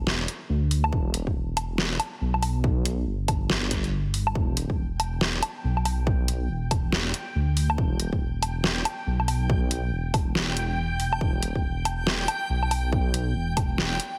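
Deep dubstep with a cavernous, brooding mood, built on a half-time, swung groove that sits on a single E minor chord throughout this excerpt. A rumbling, beating detuned saw bass sits up front from the start alongside a dubstep kit of hi-hat, deep snare and woodblock, joined at 0.9 seconds by a punchy layered electronic kick re-recorded in a large room. At 4.8 seconds a reversed, granular, dreamy texture fades in high above with its own reverb, while the overall sound stays dry and heavily compressed, like a radio broadcast.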